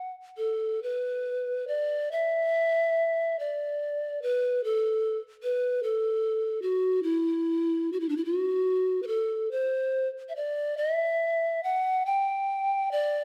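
A haunting, mournful Celtic folk excerpt in 6/8 with uneven, rubato timing, featuring a solo pan flute whose airy, hollow wooden tone, straight and softly attacked, sits up front across its 13.2 seconds, ringing in a moderate scoring-stage reverb.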